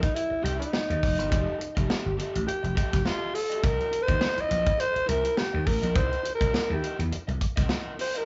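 A breathy, raspy alto saxophone takes an up-front solo across this gritty funk excerpt, its vibrato riding over a swung sixteenth-note groove and chords moving between C7#9 and F9. A dry, mid-forward drum kit with a tight kick and medium-tuned snare drives the groove, while a growly, punchy slap bass enters at 0.3 s and an overdriven, picked garage guitar sits low in the mix. The band sounds like it is playing live in one room with light reverb and a rolled-off, dusky top end.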